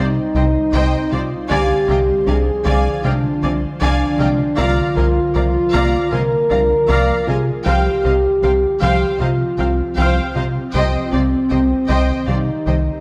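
Relentless and brooding, this cinematic fragment of a hybrid orchestral and electronic film score moves at 78 BPM in a straight 4/4, set in C minor. A mellow French horn section sits up front with sustained chords, while a round, deep analog bass plays a riff beneath it and a tight, nasal sequenced synth runs arpeggios in the background through chorus and digital delay. Bowed strings fill out the texture: lush violins carry a smooth second line, focused violas supply accompaniment, and a clear double bass section and a very quiet cello section hold the bass. An ethereal, airy pad with ensemble chorus, phaser and its own reverb lays slow-attack chords underneath. The harmony moves from Cm through Ddim, Bb and Fsus2 over a held C before returning to Cm, and the whole 13-second passage sits in a wet scoring-stage reverb.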